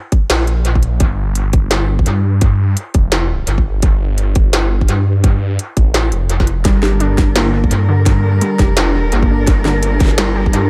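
A swirling, thick, phased detuned saw bass sits up front from 0.3 seconds in this dark, heavy half-time drum and bass excerpt at 170 BPM in G minor, driven by a tight, layered electronic kick and an industrial kit of clanging snare and crisp hats soaked in dub echo, before a lush bowed cello section with sidechain pumping and a warbling, lo-fi pluck playing chorused, tape-echoed arpeggios join around 6.6 seconds over a single Gmadd9 chord in a dry, echo-heavy mix.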